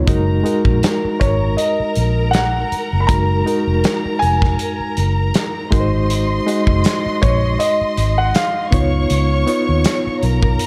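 A dark, mellow concert grand piano carries the melody from 1.2 s, its deep tone trailed by a slapback echo. This excerpt of lush, romantic 1970s-style soul moves at an easy, swung pace. A reedy electric piano with fast tremolo sits up front in the accompaniment, clean and direct. Beneath it, a vintage foam-muted fingered electric bass adds a round, amped low end, while a modern studio drum kit, with tight kick, medium-tuned snare and hi-hat, breathes in a pumping room sound. A rich violin section plays a bowed second line with vibrato and a smooth, focused top. A jingly, very quiet tambourine joins at 6.8 s, all under light reverb as the harmony passes through F#69, G#7 and C#9.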